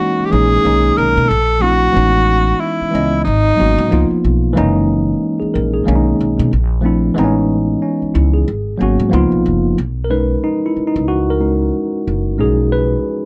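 Lightly reverberant and close, this relaxed, smooth R&B excerpt swings gently at 92 BPM in B major, with a breathy, mellow tenor saxophone carrying the melody with light vibrato, scooped notes and a slapback echo until 4.2 s, a worn, slightly out-of-tune tine electric piano comping through jazzy extended chords before taking a solo from 9.8 s, and a woody pizzicato upright bass anchoring the low end.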